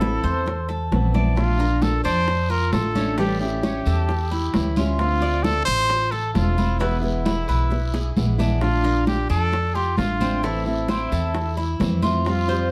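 Cuban son in the guajira vein, this danceable, sultry excerpt is led by a close-miked solo trumpet with vibrato sitting up front, over a woody, dark pizzicato upright bass, also prominent. A picked steel-string acoustic guitar supplies accompaniment beneath while a metallic, double-strung Cuban tres weaves arpeggios, and ringing, saturated congas and round, low-tuned bongos played with soft hands sit back in the mix, joined at 1.4 s by a raspy guiro. A drum fill arrives at 7.7 s, and moderate studio reverb gives the whole production a dark, warm glow.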